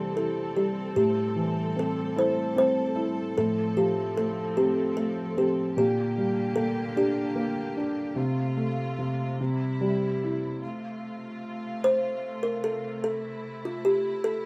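Gentle and innocent, this children's lullaby in F major drifts at a rubato 50 beats per minute in 6/8, and it is cut from a longer piece. A kalimba carries the melody throughout, its short thumb-plucked notes woody with a hollow-box resonance. Beneath it, a felt-muted upright piano plays an intimate, dark accompaniment that sits up front, its thick felt giving a soft, mellow tone until it stops at 10.6 seconds. A clear symphonic string section holds sustained bowed chords at a lower level for the whole 14.5 seconds, its ensemble sound smooth on top with light vibrato and an intense glow. The harmony moves from C6 through Am7, F/A, Gm/Bb and F/C to C, then opens into a second section on F before settling on Am, all wrapped in light reverb.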